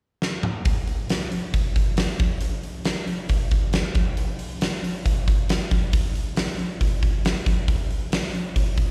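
Rock drumming with a brooding, gritty mood, this short cut from a longer piece features a huge arena drum kit on its own, driving a straight feel in 4/4. The kit opens with a fill from 0.2 to 0.7 seconds before settling into the main section, which runs to 8.9 seconds. Hi-hat, kick, snare and toms all come through, with a fat snare and a punchy kick sitting up front. The acoustic kit carries a hall character and light reverb, sounding like a live gig heard through the venue's PA in a recital hall.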